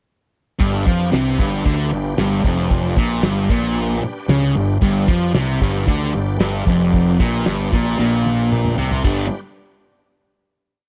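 Classic rock in G major at 114 BPM, this short, sunny and driving piece sets two sludgy overdriven electric guitars on a picked single-note riff, one up front and the other darker in the background, over a growly fuzz bass that doubles the riff in driving eighth notes and a dry, damped 70s drum kit with a fat snare and tight kick, while a shouting tonewheel organ with key click, slow rotary speaker and chorus vibrato holds chords with swells and changing inversions behind them, a drum fill from 8.0 to 9.0 seconds leading into a final chord that rings to the close in a small, close-miked 1970s-style room.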